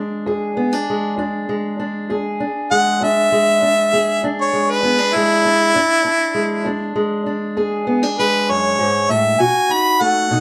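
A light reverb and faint lossy-compression artefacts colour this short cut from a longer acoustic country blues, which has a swaggering, rollicking mood at 66 beats per minute in a straight 12/8 feel in E mixolydian. A fingerpicked steel-string parlour guitar opens alone at 0.0 seconds, its dark, boxy tone sitting up front as it carries the accompaniment over an E7 chord. At 2.7 seconds a warm harmonica enters with the melody, playing a jazz-styled solo with vibrato, scooped notes and a smooth top end. The harmonica sits up front and slightly louder than the guitar, ranging from E4 up to B5 while the guitar covers the low and middle register. Near the end, at 9.4 seconds, the harmony moves to B7 before the excerpt cuts off at 10.4 seconds.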